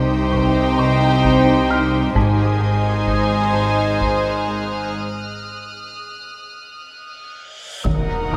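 Tense and eerie, this slow 64 BPM suspense film-score cue in 3/4 sets soft-attack, sul tasto violin, viola and cello sections and a sul tasto double bass section over a warbling organ-like pad with ensemble chorus and built-in reverb, a dry, woody marimba riff struck with hard mallets, and a dark felt-muted upright piano. A taiko ensemble enters at 0.3 seconds, a high floating violin line joins at 2.2 seconds, and a huge reverse cymbal at 7.4 seconds leads into an impact at 7.9 seconds, all in a moderate concert hall captured by close, detailed microphones.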